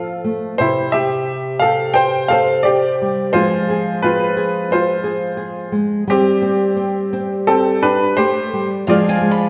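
At a steady 87 BPM in straight 4/4, this tender, heartfelt folk-pop ballad excerpt sets a bright, worn upright piano melody with audible action noise and a slightly detuned edge up front over dark, fingerpicked nylon-string guitar with finger squeak, moving through F, C, F minor and Gsus4 in a reverberant hall before a boxy, picked swing-style acoustic guitar enters with arpeggios at 8.9 seconds.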